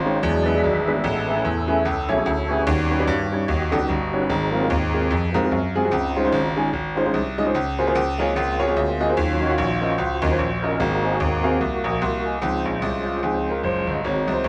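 Uptempo gospel at 148 BPM with a swung 4/4 feel in Db major, this soulful, jubilant excerpt opens with a fat, lightly overdriven tonewheel organ taking the solo on sustained chords, its slow rotary speaker, chorus vibrato and key click turning over lush harmonies like Amaj9 and Eb7alt. Underneath, a bright concert grand piano holds down the bass with deep, brilliant, up-front weight, while a woody upright piano with long sustain accompanies, adds a brief fill and then steps out for its own solo at 12.4 seconds. A clean, twangy, picked electric guitar slips in quietly in the background for a short second line near 8.2 seconds, and the whole band sounds live together in a moderate stone room.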